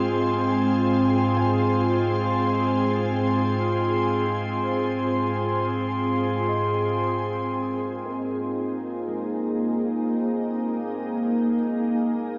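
Drenched in a huge ambient reverb within a dark, warm production, this weightless, luminous ambient fragment in free time and Ab major rests on a bright, up-front organ-like pad of pure sine chords with ensemble chorus, while a very quiet felt-muted upright piano traces mellow, intimate arpeggios and a glassy, ethereal glass harmonica hovers on C6 until 7.5 s, after which a filter sweep runs over the pad to the close at 12.4 s.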